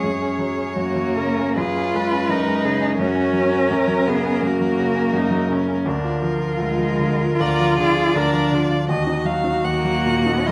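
A smooth, vibrato-laden violin carries the melody in this solemn, yearning slow romantic movement for piano quartet in F# major, moving at 68-88 BPM with a rubato feel, while a rich, expressive cello sings a soft-attacked second line with portamento, a focused viola adds accompaniment, and a clear, up-front grand piano anchors the harmony, all set in a moderate recital-hall reverb in this 10.5-second passage cut from a longer piece.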